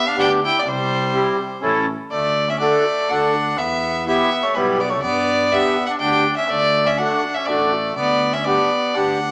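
Festive and jolly, this short alpine folk dance-band excerpt moves at 123 BPM in 3/4, in D major, with a rich, biting, earthy solo fiddle up front carrying the melody. A clear trumpet with light vibrato and a soft attack plays a classical-style second line beneath it, while a reedy accordion with slow beating fills in the accompaniment and a dark tuba holds down the bass. The band sits in the wet reverb of a large studio, and the passage moves from a brief opening section into a longer second one at 2.1 seconds, running through to 9.3 seconds.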